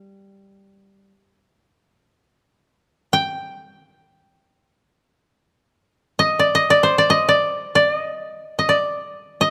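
Close, detailed microphones and a touch of light reverb capture this short cut from a calm, austere piece of Japanese traditional chamber music in free time. A faint koto accompaniment sounds a low G3 from 0.0 to 1.1 seconds. A second koto, dry, woody and up front under fingerpicks, then carries the melody from 3.1 seconds to the end, moving between C5 and G5.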